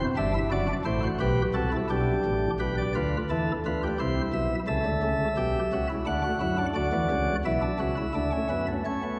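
Sparkling flute stops of a solo chamber organ, light and bright with an audible chiff and placed up front, carry a driving yet solemn baroque-style three-part fugue in triple metre, its lines reaching from low to high register and moving into a second section at 2.6 seconds, with the organ set in a long, wet church reverb and a softened top end in this short cut from a longer piece.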